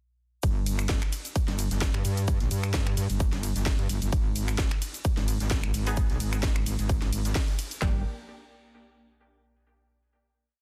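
A swung four-on-the-floor kick drives this gritty, bouncy bass house piece, its overdriven big-room kit of punchy kick, huge snare and clap layered with a garage kit's programmed hats, cracking backbeat snare, ride, cabasa and snaps, with a very quiet looped brush breakbeat beneath, all entering at 0.4 seconds as a single drop. Up front, a saturated, metallic FM wobble bass pumps with chorused, modulated phrases whose wobble speed keeps changing. From 5.9 seconds, sparse, bright orchestra-hit-like stabs echo through tape delay, one detuned sawtooth shape moved in parallel, before the track settles on a closing G minor chord at 7.8 seconds in a dense, heavily limited master with a faint mains hum.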